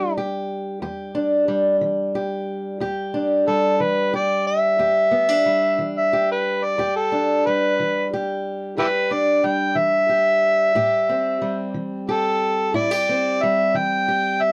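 Brooding and soulful, this short cut from a longer acoustic country blues piece in E minor moves at a slow 60 BPM in a 12/8 metre, resting on Em7 before shifting to Am7 at 10.8 seconds. An amplified, overdriven harmonica carries the melody up front as a solo throughout, its gritty tone shaded with light vibrato, tongue slaps and scooped notes in a jazz-inflected style. Beneath it, a fingerpicked steel-string parlour guitar adds a dark, boxy accompaniment, both captured by close, detailed microphones with little reverb.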